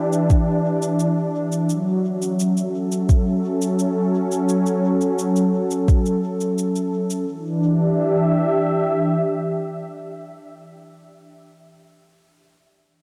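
A straight 4/4 pulse comes from a soft, tape-warm electronic kick drum up front until 6.0 seconds, with a quieter produced cabasa beside it until 7.2 seconds, joined by a smooth, detuned sawtooth analog pad with chorus and a soft attack that sustains chords from Em7 to F#m7 and back to Em7 through 10.8 seconds, the whole meditative, deep ambient dub fragment set in a huge ambient reverb.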